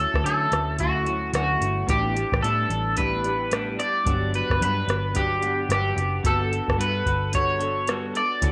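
Sunny and dreamy, this short excerpt of indie bedroom pop moves in an easy 4/4 with a gentle swing on the sixteenths. Up front, an electric guitar at the edge of break-up carries the melody with a twangy, slightly broken-up tone, colored by analog chorus and slapback echo. Beneath it, a clean semi-hollow electric guitar plays accompaniment through lush chorus and a warbly pitch drift, while analog keys built from detuned square and sawtooth waves sit mellow in the background with a filter sweep, chorus and a cassette-tape character. A dark, foam-muted picked bass gives a round low end, and a soft vintage rhythm box enters at 0.1 seconds with a deep kick, metallic hi-hats and rim clicks that sound tape-warm and re-recorded in a small room. Light reverb and digital ambience frame the whole as the chords drift from Dmaj7 through A9sus4 to Gmaj7 and Gmaj9.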